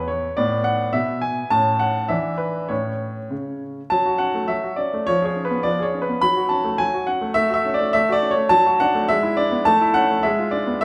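A straight, even 2/4 pulse at 104 BPM carries this elegant, cheerful classical-period piano sonatina, set in A major before shifting to F# minor at 3.9 s. A clear, natural grand piano plays solo and up front across a range from E2 to B5, moving through chords like D69/A, C#7/E# and E7/G# before landing on a G#dim7 near the end. Moderate recital hall reverb gives the instrument a sense of space in this short excerpt cut from a longer piece.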